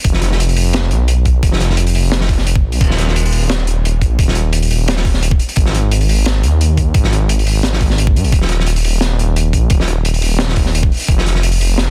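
A dark detuned saw bass dominates this half-time drum and bass excerpt at 174 BPM in 4/4, sitting up front with a deep, rumbling sawtooth tone that beats against itself, a sine-like weight underneath, a fast attack and saturated, sustained notes ranging from Eb1 to Ab2. The mood is spacious and dark. A layered electronic kick drum gives a knocking, produced thump at the same level as the bass and drops out at 11.2 seconds. Set lower in the mix, a crunchy breakbeat kit with an acoustic, small-room character brings gritty, saturated hits, a high-tuned snare, dark cymbals on crash and hi-hat, and a smooth, rolled-off top. The sound is dry with little reverb and a dense, heavily limited modern master, and the bass rings on until the clip is cut at 11.9 seconds.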